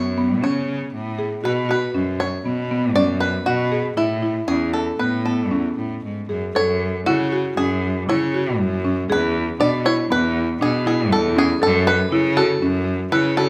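A moderate recital-hall reverb surrounds this hopeful, shimmering piece of contemporary chamber music, cut from a longer work and set in an uneven 5/4 metre with a straight feel. Up front, a bright, twangy bluegrass banjo played with fingerpicks carries the melody with a percussive, acoustic bite. Beneath it, a buzzing marimba struck with medium mallets on hardwood bars spins arpeggios in a woody, dry, dark tone. A single bowed cello holds the bass, rich and intense with vibrato and a smooth top, also sitting close to the listener. The harmony moves from F#m through Bsus2 and Aadd9, and a second passage from 6.5 seconds drifts through F#madd9 and E before settling back on F#m.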